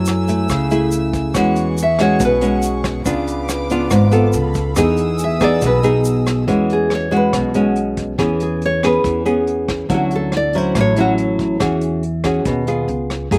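The sound is dry and open-air, with little reverb and an intimate, exposed quality. This relaxed, romantic bossa nova in E major moves at 140 BPM in a straight 4/4, and it is cut from a longer piece. A fingerpicked classical nylon-string guitar with old, woody strings sits up front carrying the melody, each note trailed by a slapback echo. A second full-bodied nylon-string guitar, also echoed, fingerpicks the accompaniment through rich chords such as F#m9, C#7b9, Emaj7 and Dmaj9. Beneath them, a growly, dark pizzicato upright bass holds the low end, while a lo-fi, muffled brush kit with a punchy kick, hi-hat and rim click keeps time from a small room. A soft-attack symphonic violin section floats pure sul tasto chords above, and a grainy, mellow tube shaker murmurs in the background; both fall away at 6.5 seconds, leaving the guitars, bass and brushes to carry the second pass.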